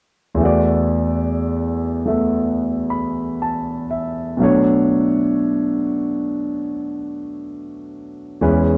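A concert grand piano opens at 0.3 seconds, playing in an accompanying role throughout this short jazz fragment taken from a longer piece. The mood is late-night and tender, with a swung feel in 4/4. Its tone is warm and natural, with a deep bass reaching down to E2 while the upper notes extend to B5. The harmony rests first on an E7sus4 chord, then moves to a Bm9 at 4.4 seconds, and the fragment ends at 8.8 seconds. The piano sits up front in a dry, close recording with a 1970s studio character, touched by light reverb and the ambience of a small room.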